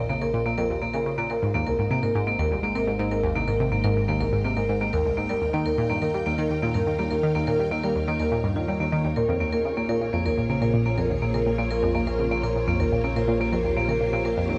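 A straight 4/4 pulse carries this cosmic, expansive stretch of sequencer-driven space music, cut from a longer piece and moving through Bbm, Abmaj7, Eb7 and Bbm7. Up front, a bright, nasal analog pluck with a fast filter pluck plays a low riff through chorus, phaser and delay, while a vibraphone struck with hard mallets rings out metallic arpeggios from 0.1 s, its fast motor vibrato and delay heard in a boxy small room. Beneath them, a lush vintage string machine with ensemble chorus fades in over the full 14.6 seconds, and a mellow, evolving analog drone with a moving notch holds the bass, the whole set in a moderate plate reverb.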